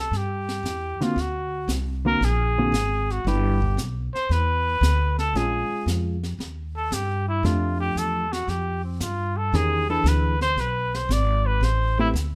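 Relaxed and warm, this short cut from a longer small-group swing and bop piece moves at 115 BPM with a lilting swung feel. Up front, a vintage-toned trumpet carries the melody with light vibrato and scooped notes, over a woody, thumpy pizzicato upright bass on gut strings and a brushed drum kit with a high-tuned snare and punchy kick, recorded in a small room. From 1.0 seconds, a dark, clean, fingered hollow-body electric guitar adds compressed accompaniment through changes from Am7 to Am9, all set in light reverb.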